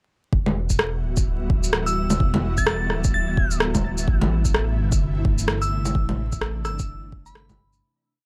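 A skittering, shuffled beat of up-front electronic bongos, shaker and rim click rides a muffled two-step kick at 128 BPM in this nocturnal, ghostly future garage piece in E minor, where a rumbling detuned saw bass with long gliding notes and an ethereal chorused pad, both pumping under sidechain, hold Emadd9 then Am, a breathy wind-like noise layer sits in the background on a held high note, and a glassy FM bell with chorus and analog delay enters at 1.9 seconds with short phrases, the dry, gritty recording carrying vinyl crackle and fading out from 5.3 seconds.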